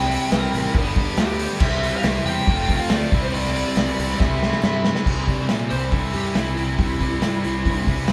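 Up-front vintage drums, with a punchy kick, dark cymbals and a pumping small-room sound, drive this confident classic rock excerpt in C major at 139 BPM, rolling through a fill from 4.2 to 5.1 s. A bright cranked stack guitar and a raw garage guitar lay down overdriven, picked riffs over a growling bass pushed through drive, while a warm lead guitar through a small cranked amp carries the melody and breaks into a solo at 5.1 s. Early on, a shadowy background second line from the same amp joins in, and crisp, barely audible group handclaps sit under a band playing live in a stone room with moderate reverb.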